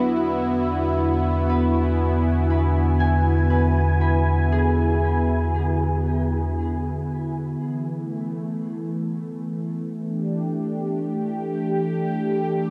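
Ambient music at a slow 59 BPM in 4/4, this serene cut from a longer piece rests on a smooth, detuned sawtooth pad with chorus, holding sustained chords up front across the full 12.7 seconds. A mellow, fingerpicked concert harp rings out arpeggios through a diffuse ambient delay, alongside a round, deep analog bass built from square and sine tones that sits up front on low E. Beneath them, an evolving analog drone of sawtooth and pulse waves with pulse-width modulation and chorus lingers in the background. The harmony rests on E until the harp falls away at 7.3 seconds; the bass drops out as the chords shift to Em7 at 7.6 seconds, and the drone follows at 7.7 seconds, leaving the pad to carry on alone. A huge reverb with a long tail wraps the dark production in a soft, spacious haze.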